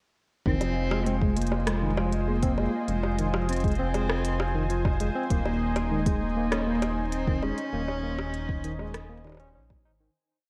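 Glitchy and intricate, this short IDM piece moves at 99 BPM in F minor, shifting from Fm7 to Eb7sus4 at 5.3 seconds over a deep, broken electronic kick and a glitched, ever-changing organic electronic kit of bongos, crisp closed hats and rim clicks, both tape-warm and re-recorded in a large room. A rubbery, hollow square bass sits up front with long gliding notes, while a barky, lightly overdriven tine electric piano runs a 9-step arpeggio loop that drifts against the bar through filter sweep and delay, under a smooth, detuned analog pad with chorus and a bubbling stepped-filter texture holding a high C5 in the background. A dark, woody cello bows a free, vibrato-laden melody up close, and the whole track carries a worn cassette warble of drifting pitch before fading out from 6.9 seconds.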